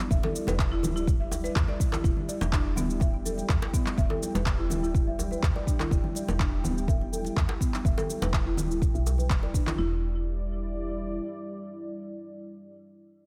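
Afro house with an earthy, warm feel, cut from a longer piece: a deep, tape-warm electronic kick sits up front beneath overdriven, layered shaker and handclaps, while ringing congas and a tight, cracking djembe stay in the background. A buzzing marimba struck with medium hard mallets spins arpeggios through a filter sweep, low-pass filter and dub echo, pumping against the kick along with a round, woody FM bass and a detuned sawtooth analog pad carrying chorus over an Em7 chord. The kick drops out at 9.6 seconds and the rest of the drums and percussion stop at 9.8 seconds. The marimba ends at 10 seconds, and the bass and the full-bodied pad ring on.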